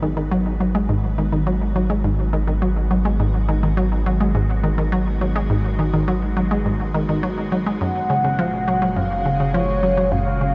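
A squelchy, resonant blip pluck drives a hypnotic riff through this expansive, sequencer-driven ambient space music excerpt at 104 BPM in G# dorian, over a round, deep analog bass and an evolving wavetable pad that fades in with phaser and shimmer reverb, while a mellow, horn-like synth lead with vibrato enters at 7.8 s as the chords move from G#m7 to F#add9, all set in a dark production with a huge, long reverb.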